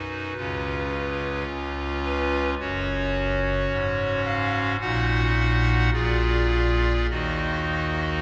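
A hollow clarinet stop on pipe organ, played solo with tremulant and romantic voicing and placed up front, opens this grave, dark fragment of a classical chorale-style piece in Eb minor, moving in a slow, rubato 4/4 at about 51-55 BPM through a long church reverb as its harmony passes from Db to a Bb7 and settles on Ebm at 7.1 seconds.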